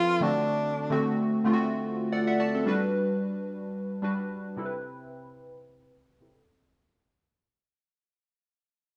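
Breezy and joyful, this short afrobeats excerpt at 110 BPM in G major opens with a breathy, close-miked tenor saxophone sounding a brief jazz-style phrase with vibrato through analog delay for its first second, while round, detuned analog synth keys with chorus and phaser carry the accompaniment over D7, Gmaj7 and Cmaj7 chords, adding a fill at 1.9 seconds before a filter sweep and fade-out from 2.7 seconds in a dry, gritty recording touched by light reverb.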